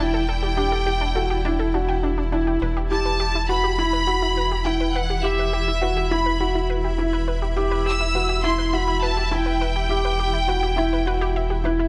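A small room lends a light reverb to this hypnotic, cinematic piano-and-strings electronica, cut from a longer piece. A clear, focused violin section with vibrato carries the melody up front over a soft, mellow riff on a felt-muted upright piano with delay, while a round, deep analog bass holds a low E. Behind them, a blurred, evolving granular cloud pad sustains chords in its own built-in reverb, and a warbling, wave-folded analog pluck plays arpeggios in the background through chorus, cassette tape and delay.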